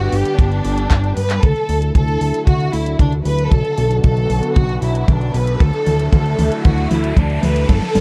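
A dry, close 1970s-style studio sound with light reverb frames this sunny, danceable italo disco excerpt in D major at 115 BPM, where a smooth-topped symphonic violin section carries the melody with vibrato and tape echo over a lush, detuned unison pad treated with chorus and phaser. A fat, saturated sawtooth-and-square analog bass sits up front beside a tight acoustic kick that enters at 0.4 seconds, while an overdriven, layered house kit of handclaps, hi-hat and toms, re-recorded in a large room, plays a drum fill before the chords move from G to Dadd9 at 1.4 seconds and on to Bm at 3.5 seconds. A filter sweep runs across the pad from 1.4 seconds, and a background electronic riser comes in at 3.1 seconds.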